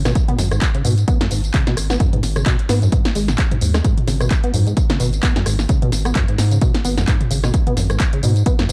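A rubbery, resonant sawtooth acid bass carries the riff in this short, gritty acid house clip, its filtered plucks snapping in fast and decaying with a mellow, tube-saturated edge and a touch of analog chorus. Beneath it, a round analog bass built from square and sine tones, wave-folded into an evolving sustain, holds the low end with tube saturation and a sidechain pump. A punchy analog drum machine enters at 0.1 s with handclaps, hi-hat, rim clicks, snare, tambourine and toms, the snare, clap and hats set in a short room. An up-front electronic kick joins at 0.2 s, tape-warm and re-recorded in a large room. The mix is dry and gritty, coloured by transformer saturation and cassette tape, with a lightly swung, trippy groove throughout.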